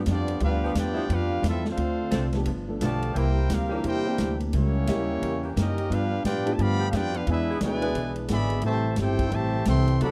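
A brisk 175 BPM swing in 4/4 drives this joyful big band jazz excerpt, where a clear, tight trumpet section carries the melody over a smooth trombone second line and background saxophone chords with vibrato, while a woody pizzicato upright bass sits up front, joined by an intimate background grand piano with audible action noise, a dark, clean, very quiet hollow-body guitar and a natural drum kit with punchy kick, medium-tuned snare, hi-hat and ride, all in a dry, close 1970s-style studio sound with light reverb as the chords move from G7 through C#dim7 to Am7.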